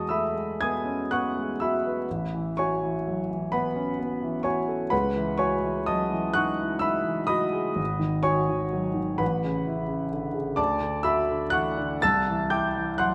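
A rubato 6/8 lilt drifts through this serene, dreamy impressionist solo for grand piano, a short passage cut from a longer piece that runs 13.1 seconds. The piano sits up front with an intimate, polished tone, long sustain and audible action noise, spanning from deep bass to high treble as lush harmonies move from Emaj9 through C#m11 and Dmaj7 before landing on C. A moderate concert hall reverb gives the playing a gentle sense of space.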